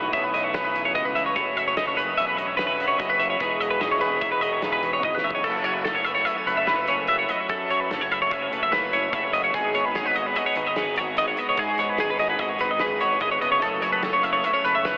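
Math rock and midwest emo at 147 BPM in 5/4, this intricate, bright excerpt sets a twelve-string electric guitar playing twangy, compressed arpeggios with subtle chorus and analog delay over a second clean twelve-string guitar's up-front accompaniment, a growly fuzz fingered bass and a loose indie drum kit with a fat snare and punchy kick sitting in the background. The chords move from B9sus4 through F#m7 and Emaj7, and a drum fill at 5.0 seconds leads into a passage cycling F#m7 and G#m7. The dreamy mix is soaked in a huge ambient reverb with a telephone-like sound.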